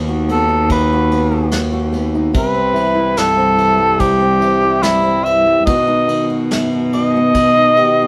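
Acoustic folk-pop ballad at 72 BPM in 4/4 with a melancholic, reflective mood, cut from a longer piece and played live in one room with light reverb. A mellow, up-front cor anglais carries the melody with light vibrato and a smooth top over fingerpicked steel-string acoustic guitar, a close, nasal bowed cello played sul tasto on the bass line, and a distant, roomy brush kit of kick, snare and ride that enters at 0.3 seconds. The chords move from B/D# to C at 2.4 seconds and B at 5.7 seconds, and a solo French horn adds a brief G4 second line at 7.8 seconds.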